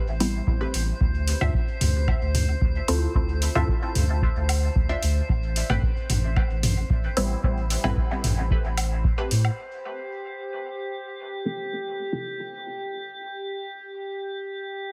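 A round, up-front sub bass with tube saturation anchors this hazy, deep dub techno passage at 112 BPM, where a dry, tape-warm kick, overdriven metallic hi-hats, overdriven toms and woodblock with dub echo, and two muted, detuned chord-stab parts with phaser and dub echo pulse around Am9 and Dm9, with sidechain pumping on the bass, stabs, toms and woodblock. A glassy, drifting sine texture hovers above throughout, and once the drums and bass stop near 9.6 s, a filter sweep on the stab joins it over Cadd11 in a heavily compressed, radio-like sound with little reverb.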